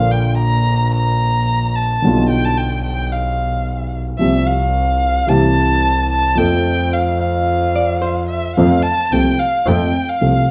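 Tango in F major at 110 BPM in 4/4, played with a rubato feel, carrying a melancholic, tense mood in this short cut from a longer piece. A violin with vibrato and portamento takes the expressive lead through both passages, its tone warm yet set back at a distance, while a concert grand piano supplies accompaniment with deep bass and short sustain. A bowed double bass sits close and up front, clear and earthy with light vibrato and an airy bow. Briefly, from 7.8 to 8.5 seconds, a clean, fingered hollow-body electric guitar adds a dark second line a little lower in level. The harmony moves from Bb through G7/B and Csus4 to C before resolving on F, all set in a moderate large studio reverb.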